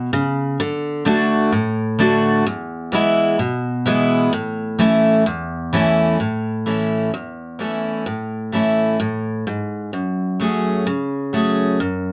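Heartfelt and sunny, this short country piece, cut from a longer performance, features a single picked steel-string acoustic guitar playing alone, its full-bodied dreadnought tone sitting up front under light reverb. The straight, steady feel in 4/4 carries the guitar through a progression from D to E to A, with the second section arriving at 6.2 seconds and a tender F#madd9 coloring the close at 9.9 seconds.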